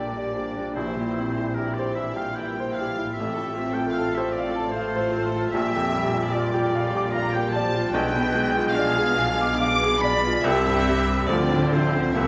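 An up-front, open-toned baby grand piano carries the melody with long sustain alongside a woody, vibrato-laden violin section in this lush, passionate classical passage in a rubato-shaped 3/4, while a clear oboe, a shadowy clarinet, an airy flute group and a smooth second violin section weave second lines over a mellow bassoon, a close viola section, a distant, roomy French horn section holding sustained chords, and an expressive cello and double bass foundation, all bathed in a recital hall's reverb.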